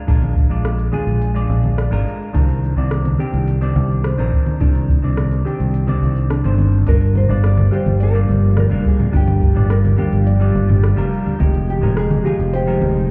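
A straight 4/4 groove from a deep, tape-warm electronic kick and a crisp, overdriven R&B kit of hi-hat, rim click, cabasa and congas in the background anchors this wistful sunset chillout excerpt. A dark, round fingered bass sits up front, while a clean hollow-body electric guitar comps and a soft chorused, delayed pluck traces arpeggios over Bb7 and Cm9. At 6.9 seconds a small, fingerpicked nylon-string guitar with delay takes the melody over an airy, breathy chorused pad as the chords move to Gm7 and Fm9, and very quiet, ringing hard-hand congas join at 7.3 seconds, all heard muffled as if through a wall, bathed in club reverb.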